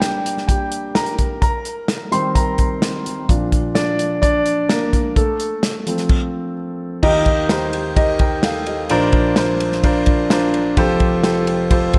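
A warm, open concert grand piano with deep bass and a slapback echo takes a solo over a dry, damped 70s drum kit with a tight kick and rolled-off top until 7.0 seconds, and the piece continues as hopeful, uplifting piano-driven pop, moving from Gm through Eb6, Bb and F into a section on Eb, Bbadd9 and Fadd9, with both parts up front in a lush hall reverb that gives this fragment of a longer piece a big arena sound.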